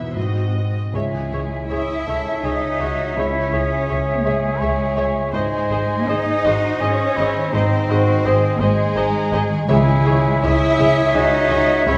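A rubato pulse in 3/4 at about 83 BPM carries this uplifting, hopeful cinematic passage in C# harmonic minor, cut from a longer piece and moving from G#7 to C#m, G#, then back to C#m. Very quiet con sordino violins hold the veiled melody over a dark, mellow grand piano with deep bass and a background viola section with soft attack. A concert harp rings out fingerpicked arpeggios, while close, bowed cellos anchor the low end, joined from 0.9 seconds by a distant double bass section. From 0.9 seconds an airy, bright flute, a lush, close second violin line and a present clarinet weave inner voices, joined by a light-vibrato cor anglais at 1.7 seconds. A faint, dry timpani note struck with hard mallets arrives at 9.7 seconds, and the whole ensemble sits in the wet bloom of a recital hall.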